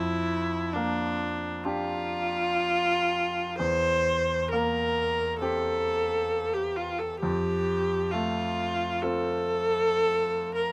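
Romantic classical music for viola and grand piano in F major, this lyrical, warm passage cut from a longer piece moves with a rubato feel at 55-70 BPM, as a rich, focused bowed viola melody with vibrato and a smooth top sits up front over a clear, open concert grand piano accompaniment with deep bass, the harmony moving from Gm7/F through C7/E to F at 7.2 seconds, all captured by close, detailed microphones in light reverb.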